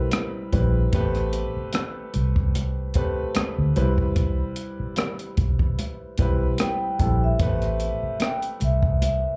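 A round, foam-muted electric bass sits up front in this short cut from a lush, silky 1970s-style soul piece in A minor at 74 BPM, with a gentle 16th-note swing. A compact cocktail kit with a punchy kick, hi-hat and rim click plays alongside, while a smooth vintage grand piano with slapback echo comps on Cmaj7 and Am9, and bright, damped congas sit in the background. At 6.6 s a mellow, ringing vibraphone played with soft mallets enters with the melody, all heard as a cinematic live club gig through the venue's PA.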